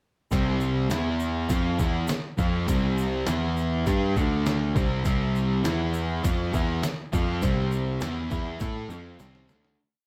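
A fuzzed, round electric bass sits up front, doubling the guitar riff with a syncopated line while two overdriven electric guitars, one crunchy and up front and the other bathed in spring reverb, drive power-chord riffs in a sunny classic rock piece. Underneath, a muffled, pitched-down sampler-style drum kit with a thumpy kick and medium-tuned snare holds a rock groove, and a grainy egg shaker stays in the background. The band sounds like it is playing live in one room, and the piece fades out from 7.4 seconds before closing with a drum fill at 9.2 seconds.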